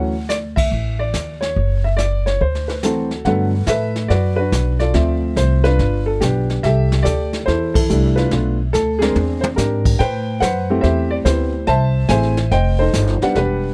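This playful jazz piano trio swings at 142 BPM in 4/4, moving from D major to G major at 3.3 s through lush extended chords, with a woody, short-sustained upright piano carrying the melody up front over a growly pizzicato upright bass and a small-room brush kit with dark cymbals and a boomy kick, which punctuates a band accent at 0.5 s and plays a fill at 8.7 s in this warm, dry fragment of a longer piece.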